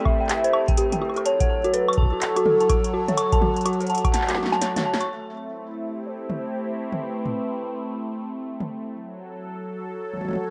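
A swirling, detuned sawtooth pad in A dorian opens this glitchy, melancholic IDM excerpt at 0.0 seconds, holding bright, phased chords over a loose 125 BPM 4/4 groove swung at 62% on the sixteenths. Almost immediately, an analog drum machine enters with a punchy snare, metallic hats, handclaps, toms and woodblock. A deep, up-front electronic kick joins the drum machine, and both share a small-room tone. Over this, a nostalgic lead with a triangle-and-sawtooth voice sings a dark, vibrato-tinged melody, while an eerie, inharmonic FM bell spins vintage-sounding arpeggios, placed forward in the mix and smeared with chorus, phaser and delay. The chords move between Am7 and F#m. At 4.1 seconds the kick drops out for a drum fill, and the bell falls silent at 5.1 seconds as the second section begins over the returning chords. The light reverb and rough home-demo mix give the whole excerpt a hazy, intimate feel.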